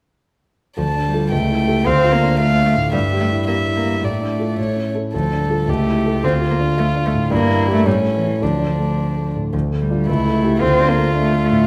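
A quick classical-period movement for piano trio in D minor, this dramatic, urgent passage moves at 110 BPM in a straight 2/4 and is cut from a longer piece. The violin carries the melody with light vibrato, a soft attack and an airy sul tasto tone, while the dark cello adds a smooth, intimate second line beneath it, both bowed by single players and heard up close. Up front, the warm concert grand piano supplies the accompaniment with deep bass and long sustain, all three parts playing from 0.8 to 11.7 seconds inside a wet recital hall reverb.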